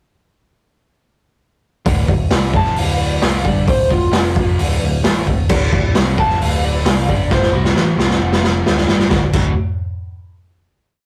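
A straight, driving rock groove in 4/4 kicks in at 1.9 seconds, as a gritty, up-front garage drum kit with a punchy kick pounds beneath an overdriven, growling bass that plays eighth notes and doubles the double-tracked fuzz guitar's power-chord riff, which sits further back in the mix. From 2.6 seconds a dark, slightly broken-up slide guitar carries a lick-based theme that returns, and this swaggering, raw garage rock piece, heard in a rough rehearsal room with light reverb and saturation, moves through a drum fill from 7.3 seconds before closing on a final chord at 9.1 seconds.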